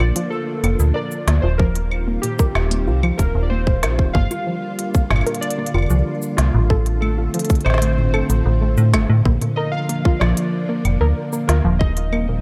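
Light reverb and a digital ambience give this short IDM excerpt a soft, airy space, with the electronic drums sounding as if re-recorded in a large room. A wistful, intricate mood comes from warbling lo-fi synth keys carrying the melody, their detuned, ring-modulated tone given chorus and delay for a nostalgic shimmer. Beneath them, a silky vintage string machine holds dark sustained chords that breathe with sidechain pumping, while a dusty, wave-folded pluck spins arpeggios through its own chorus and delay. A metallic FM bass sits up front with a mellow tone, a fast attack and decaying notes, and a woody, crisp electronic kit of claves, hi-hat, shaker and snare adds overdriven texture. At 1.6 seconds a tight, overdriven kick drum joins up front, anchoring the drifting harmony from Bbmaj7 through Gm7 and Dm7/A to Eb69.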